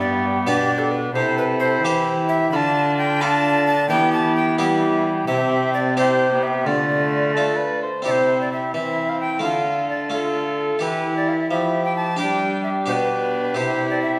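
From the first moment, all five players sound together in a courtly, solemn renaissance-style consort dance in a straight 6/8 at 87 BPM, tuned slightly low to A4 = 435 Hz. A breathy tenor recorder carries the melody with a woody chiff, crisp attack and gentle vibrato, while a mellow cor anglais sings a second line just beneath it. The bright, plucked harpsichord and a rich viola with light vibrato fill out the accompaniment. A cello with a nasal gut-string tone anchors the bass, and both bowed strings sound reedy and somewhat distant, in period style. The harmony moves through G, C, D minor and E minor, and a second section begins at 8.1 s before this brief fragment of a longer piece stops at 14.2 s. The ensemble sits in the generous, wet reverberation of a recital hall or church, giving the dance a spacious, ceremonial glow.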